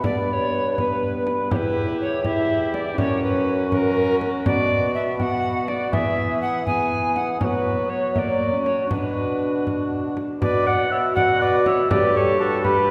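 A rustic, solemn Renaissance-style consort dance in B minor at 81 BPM in a straight 6/8, this 12.9-second cut opens with all five parts together: an airy, up-front alto recorder with chiff carries the melody over a mellow, distant cor anglais second line, a viola's reedy period accompaniment with a gut-string tone, a bassoon bass and a close, dry frame drum struck with hard hands, the winds and strings bathed in a church-like hall reverb as the chords move from G through Em and F# to Bm.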